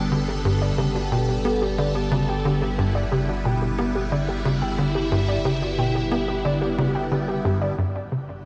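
A dreamy mix soaked in lush hall reverb sets the tone for this short cut from a longer piece of ambient, sequencer-driven space music, expansive and luminous in mood. A swirling, vintage string machine holds sustained chords up front, its bright sawtooth tone run through ensemble chorus, a phaser and shimmer reverb. Beneath it, a tight, punchy sequencer bass drives a nasal riff with subtle chorus and delay, while a deep, round sine sub bass sustains a low G. A warbling, lo-fi pluck traces detuned arpeggios with a noise layer, chorus, delay and shimmer reverb, falling silent at 7.8 s as the harmony moves from G to Gmaj7. A straight 4/4 pulse and slightly low tuning, with A4 at 437 Hz, underpin the floating texture.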